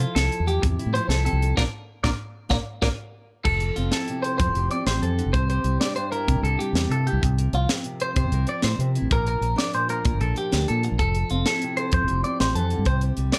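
From the first moment, a boxy fingerpicked steel-string acoustic guitar, twangy compressed electric guitar arpeggios colored by phaser and slapback echo, a dark, round, punchy fingered electric bass and a tight funk drum kit with high-tuned snare, kick, hi-hat and crash play together in this danceable, warm highlife guitar band piece in 12/8, with a band accent from 1.6 to 3.5 seconds and a dry, up-front sound.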